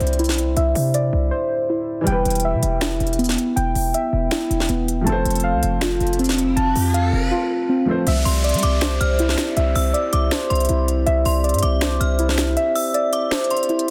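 Eerie and brooding, this half-time trap hip hop cut at 160 BPM opens over Cadd9, Em and F harmonies with a dark, worn grand piano, muted felt-like synth keys arpeggiating through chorus and digital delay, a punchy, heavy 808-style bass and crisp trap drums with finger snaps and a sharp, softly clipped snare. After a brief break at 1.3 seconds and a riser, it shifts at 8.1 seconds back to Cadd9 with ethereal glass harmonica chords, joined moments later by a ringing, inharmonic FM bell line, and the kick drops out at 12.6 seconds in a dense, heavily limited mix with light reverb.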